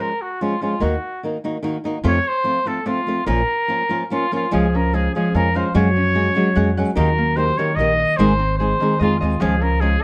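Dramatic and passionate, this mariachi fragment in 3/4 at 146 BPM moves from Bb minor to Db major at 4.5 s, with a vintage, up-front trumpet carrying a classical-style solo melody through a slapback echo over fingerpicked flamenco guitar, a woody pizzicato upright bass entering at 0.8 s, and a mellow, ringing Celtic harp adding arpeggios from 4.5 s, all set in a moderate studio reverb.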